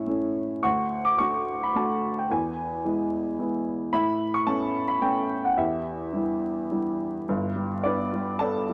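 A wet spring reverb with a 2.7-second tail and a bed of vinyl crackle surround this short fragment, cut from a longer piece. It is a lyrical classical solo for a baby grand piano, played in 3/4 at 108 BPM with a free, rubato feel in E dorian. The piano sits up front with a worn, present tone and long sustain, ranging from G1 up to D6 across its 8.7 seconds. Its harmony moves through A, D, E, Aadd9 and Em7, then shifts to G as a new passage begins at 7.3 seconds. The mood is cool and moody, with the reverb letting each chord hang in the air.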